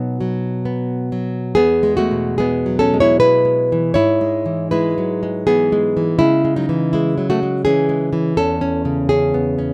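A fingerpicked nylon-string guitar sits up front with an acoustic, warm classical tone, playing alone across this short, tender and sunny romantic piece in E major, tuned to A4 = 441 Hz. The 3/4 pulse moves with a loose rubato feel between 63 and 84 BPM, opening briefly on B before settling at 1.6 seconds into a passage that moves from E through E/G# to C#m and C#m/E. Light reverb and a rough home demo mix give this fragment of a longer work an intimate, unpolished character.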